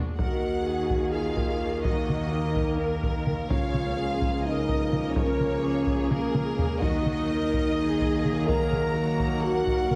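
A relentless, epic orchestral film cue in 7/8 opens with bowed strings: a distant violin section on a background second line, close, even violas, rich cellos and lush double basses. From 0.2 s a smooth violin melody, mellow French horns, vintage-toned background trombones holding chords and heavy, saturated taiko drums up front join in, with a drum fill at 6.1 s, all set in a wet scoring-stage reverb with a heavily compressed, radio-like sound.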